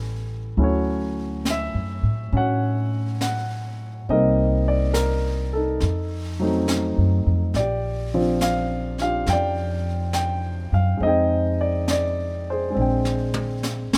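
A dry recording with little reverb frames this romantic, intimate jazz ballad, swung at a slow 69 BPM in 4/4 and lifted from a longer piece. A warm grand piano with short sustain and a woody, thumpy pizzicato upright bass sit up front from the start, moving through chords such as Dmaj7, Cm7, F7b9 and Bb69. An airy brush kit with a high-tuned snare joins at 0.6 seconds, sitting a little lower in level, and closes with a drum fill from 12.8 seconds over a Bb13.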